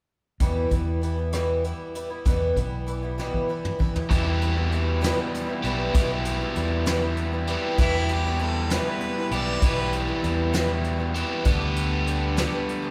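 A moderate concert-hall reverb gives this short folk rock and heartland rock excerpt the lingering air of a church or large hall, setting a reflective, dusty mood in a straight 6/8. A picked twelve-string acoustic guitar, boxy and shimmering with its octave-doubled strings, carries the accompaniment alongside a round, amped fingered electric bass and a soft brush drum kit with a fat snare and tight kick. A drum fill leads into the second section at 4.1 seconds, where a bright, overdriven electric guitar enters up front, double-tracked and picked, with a riff that runs to the end. Between 7.8 and 9.9 seconds a distant, roomy harmonica adds a brief second line with light vibrato in a classical style. The harmony rests on E minor before shifting to Gadd9/D near the close.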